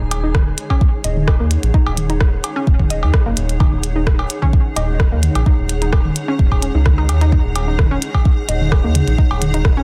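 A dry, dense and heavily limited mix carries this clinical, cool minimal techno excerpt at 129 BPM in Eb minor, where a soft, tape-warm electronic kick sits up front beneath a rubbery, hollow square bass with tube saturation and sidechain pumping, clicky hats and rim clicks from a minimal click kit, analog cowbell and toms with dub echo in a large room, a juicy, squelchy resonant blip pluck with chorus and dub echo, and a cloudy, evolving granular pad glowing with its own reverb, all resting on a single Ebm chord.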